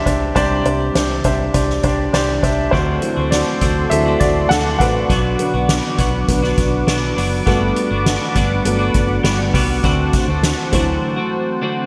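Uplifting and hopeful, this piano-driven pop excerpt moves at 101 BPM in a straight 4/4, with a woody, up-front upright piano carrying the chords over a round, punchy muted electric bass and a soft-mallet drum kit of dark cymbals, fat snare and boomy kick. At 2.7 seconds the piano moves into a solo as a smooth, detuned sawtooth pad with chorus and a bright, twangy twelve-string electric guitar riff with lush chorus join in, over a progression of Csus2, D7, Bm and Gmaj7. A lush hall reverb and a bright 1980s-style digital production frame the sound, and a break arrives at 11.0 seconds as the cut ends.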